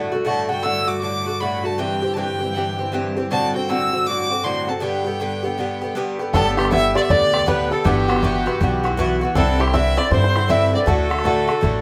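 A picked bouzouki with metallic double strings opens this lively, bright Celtic hornpipe in G major at 158 BPM, its swung rhythm set over a lush bowed string section drone. From 0.3 seconds a rich, focused fiddle with light vibrato carries the melody up front. At 6.3 seconds the drone gives way as a reedy, sweet accordion and a very quiet, twangy fingerpicked banjo add a second line, joined by a thumpy, woody gut-string upright bass and a tight, damped bodhran in the background, all set in a moderate studio reverb.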